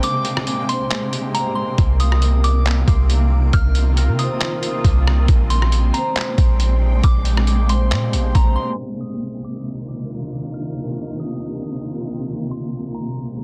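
A deep, boomy 808-style bass enters up front at 1.8 s beneath a gritty, pitched-down sampler drum kit of thumpy kick, hi-hat, rim click and handclaps with a softly clipped snare, in a spacious, hazy, half-time cloud-rap fragment where a blurred, evolving granular pad pumps under sustained chords, a pure FM synth bell sings a mellow melody through chorus, phaser and tape echo, a ringing concert harp plays arpeggios, and a breathy, wind-like noise texture drifts in the background, with the drums and bass dropping out around 8.5 s as a filter sweep carries the dense, low-passed mix to its close.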